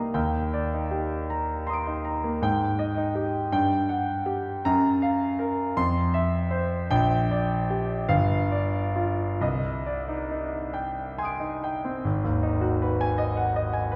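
In a 6/8 that bends freely with rubato, this short excerpt of impressionist classical solo piano drifts with a hazy, mysterious mood. A single concert grand carries everything across its 14 seconds, ranging from a deep bass low in the keyboard up to notes near the top. The piano's tone is clear and open, with its lowest register giving the harmony a dark footing and the instrument itself sounding up front. Around it, a generous scoring stage reverb lingers, placing the listener further back in the hall. The harmony wanders through colors like Ebmaj7, F#maj7 and Cmadd9, with a brief chordless moment around 3.5 seconds, before shifting to a new passage at 12.0 seconds that opens on G#m7, so the fragment ends suspended as if cut from a longer piece.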